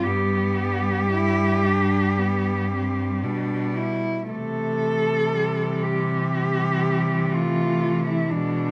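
A warm, up-front cello carries the melody between D4 and A4, bowed with vibrato, expressive portamento and a distant quality, in this short, lyrical classical passage cut from a longer piece for cello ensemble. Beneath it, a rich second cello traces its own line from G3 to E4, while another rich cello, soft in attack, supplies accompaniment between E3 and G3, both sharing the same vibrato and gliding portamento. A clear, smooth cello enters at 0.1 s with an even, lightly vibrated bass from G2 to C3, sitting up front in the blend. The mood is serene, in C major at a slow 55-62 BPM in 4/4, with a flexible rubato feel as the harmony moves from G to C at 4.3 s. Close, detailed microphones and very little reverb capture every nuance of the bowing in an intimate, dry sound.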